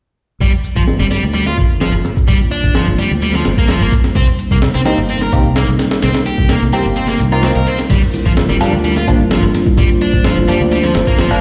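Raw and swaggering, this breakbeat excerpt struts along at 128 BPM in G minor, moving from Gm7 to Cm7 and back. A gritty, compressed sampler-style drum kit with a thumpy kick and high-tuned snare drives it alongside a growly, overdriven fingered electric bass, while a biting overdriven guitar plays a picked riff through tube saturation and digital delay. Behind them a deep, moody analog pad holds slow-attack chords with chorus, 12-bit sampler grit and sidechain pumping, and an overdriven electronic shaker sits in the background. Filter sweeps run across the drums and the pad until 7.9 seconds, and the kick drops out from 7.0 to 7.9 seconds just before the next section arrives. Very quiet ringing congas enter at 4.5 seconds, followed by a nasal, band-passed chord stab with a fast attack, phaser and delay, all set in a big, bare-room reverb.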